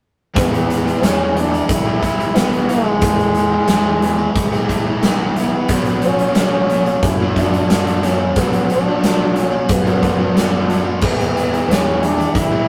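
A warm, distant trombone carries the melody through this dreamy, wistful fragment of shoegaze-tinged rock and dream pop, which moves at 90 BPM in a straight 4/4 and sits in E mixolydian. Beneath it, an overdriven semi-hollow guitar and a second overdriven electric guitar, tucked into the background, play riffs, while a bright, twangy clean guitar recorded direct adds very quiet picked arpeggios. A fuzzed, picked electric bass with overdrive anchors the low end, and a big acoustic drum kit sits up front with bright cymbals, a medium-tuned snare and a tight kick. The harmony shifts from E to Bmadd9 at 5.7 seconds and returns to E at 11.0 seconds. The whole takes place in a wet stone room with a rough rehearsal-room character and tube saturation.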